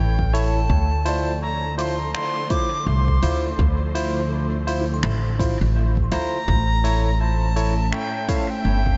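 The upright bass stands out most, played pizzicato up front with a woody, thumpy tone on steel strings, anchoring this meditative, spacious ambient dub excerpt in a swung 4/4. Above it a bright, reedy wooden flute carries the melody, airy and close-miked with vibrato and tongued notes, its lines trailing into dub echo. A barky tine electric piano adds lightly overdriven stabs through a combo amp, also thrown into echo, while a muted string section holds dark, veiled, bowed chords at a distance. An electronic kick sits deep and tape-warm in the background from 0.2 seconds, joined by a soft-mallet kit with finger snaps and hi-hat carrying a natural hall character and its own echo. A very quiet kalimba rings out mellow, boxy arpeggios from 1.1 to 7.7 seconds, over a harmony that moves from A to Dm7 and back to A, all set in light reverb and small-room ambience with a rolled-off top end.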